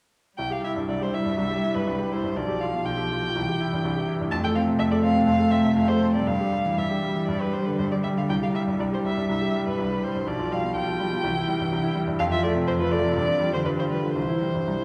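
In a flexible 4/4 with uneven beats and rubato, this quick, lively and cheerful classical-period movement for piano quartet, cut from a longer piece, runs from 0.4 to 14.8 seconds with all three parts playing throughout. An up-front solo violin carries the melody with a rich, smooth, even bowed tone and vibrato, while a single cello adds a focused, vibrato-tinged second line, and a bright, brilliant concert grand, also up front, supplies accompaniment with deep bass, an open sound and short sustain. The harmony circles around C, G7/B and F with brief turns to Em/G and bare fifths, all set in a wet recital hall heard from further back in the room.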